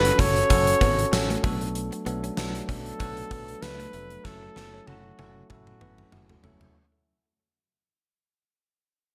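Moody and urgent, this short cut from a longer 1980s-style pop piece moves at 96 BPM in 4/4 with a light swing on the sixteenths, set in F# minor. An up-front flugelhorn carries the melody from the start, its warm tone marked by vibrato and scooped notes in a pop-style solo voice. Beneath it, a bell-like tine electric piano supplies clean, direct accompaniment while a fingered electric bass adds a round, amped low end, moving through F#m, Bm7 at 1.4 seconds and F#m7 at 4.3 seconds. A gated 80s drum kit sits prominently in a bright stone room, with a fat snare, tight kick, hi-hat, tambourine and toms, and a drum fill that begins at 4.3 seconds. Tucked in the background from 0.2 seconds, a clean, compressed electric guitar recorded direct picks out a riff with a subtle chorus. Light reverb sits over the mix, and the whole passage plays under a fade-out.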